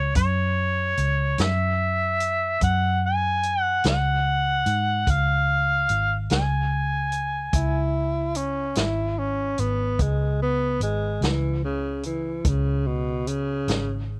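A rollicking, soulful slow blues in a straight 12/8, cut from a longer piece. A mellow harmonica carries the melody from the start until 7.9 seconds, its overdriven tone shaded with light vibrato and scooped notes in a jazz-inflected solo voice. At 7.6 seconds a breathy tenor saxophone enters on the second line, smooth on top with its own vibrato and a slapback echo. Underneath, a vintage muted fingered electric bass gives a dark, round, foam-muted low end, while a vintage acoustic drum kit of hi-hat, punchy kick and medium-tuned snare sits close with a rolled-off top. The sound is dry and up front, with little reverb and an open-air feel, moving from a Gb7 chord to a Db5 chord.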